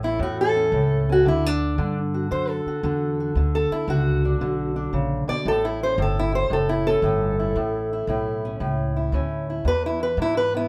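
A fingerpicked, boxy parlour steel-string acoustic guitar carries a dark, up-front solo melody over woody, growly pizzicato upright bass from the first second in this rollicking, soulful swung country blues excerpt, moving through A, D, A and E in a moderate studio reverb until it is cut off at 10.7 seconds.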